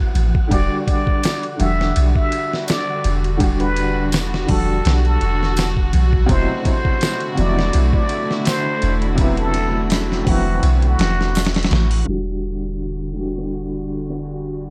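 A raspy, growling plunger-muted trumpet carries the melody with tape echo over a melancholic, hypnotic trip hop groove of gritty sampler-style drums with a thumpy kick and fat snare, a deep, round 808-style bass, a felt-muted upright piano with tremolo and audible action noise, dark, reedy bowed strings, congas and tambourine in the background, and a faint, breathy wind-like noise layer, with the kick dropping out from 10.6 to 12.1 seconds before a filter sweep on the piano carries the excerpt to its close at 14.7 seconds.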